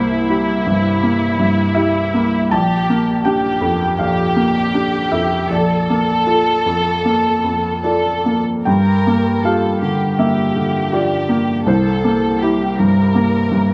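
Neoclassical piano and strings in a reflective, longing mood, moving with an unhurried rubato that lets the beats stretch and settle. A felt-muted upright piano sits up front with a soft, intimate, mellow tone, carrying the accompaniment through chords such as C7, Gm7/Bb and Bbmaj7, while a muted chamber violin section plays the melody in a dark, veiled voice with vibrato. The two parts play together live in a large studio room whose moderate reverb adds space around this short passage cut from a longer piece.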